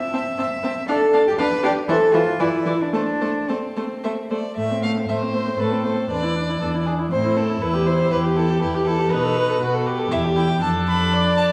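A bowed cello with a reedy, gut-string tone opens this lively, spirited classical-period movement for string quartet in 3/4, sitting close and up front as the bass. At 0.1 s the first violin takes the melody with a warm period-style sound, while the second violin adds a nasal second line and the viola's rich accompaniment, with light vibrato, sits distant beneath it. The rubato feel and wet recital-hall reverb, heard from further back in the room, give this fragment of a longer work a spacious air, with a new section arriving at 4.6 s.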